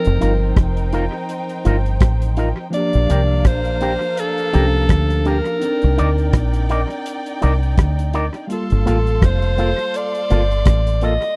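Bittersweet and longing, this short lovers rock reggae excerpt sets an edgy alto saxophone melody with tape echo over lush, distant bowed violins, a worn, lightly overdriven tine electric piano, twangy envelope-filtered guitar stabs, a round, foam-muted dub bass and a cloth-damped, thuddy drum kit with a tight kick, all in a dry, close 1970s-style studio sound.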